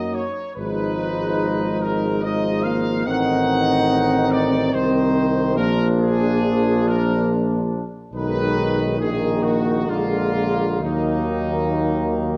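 Classical brass band music in a hymn-like 3/4 with a rubato feel, this solemn, yearning 12.4-second excerpt sets a bright, present, tightly blended trumpet section on the melody over a distant flugelhorn second line with light vibrato. Two euphoniums supply accompaniment: one clear and set in the background, the other vintage-toned with vibrato, while a roomy tuba anchors the bass. The harmony moves through half-diminished and diminished chords to a closing Bb7 and Ebm, heard within a moderate recital hall reverb and a dark, warm production.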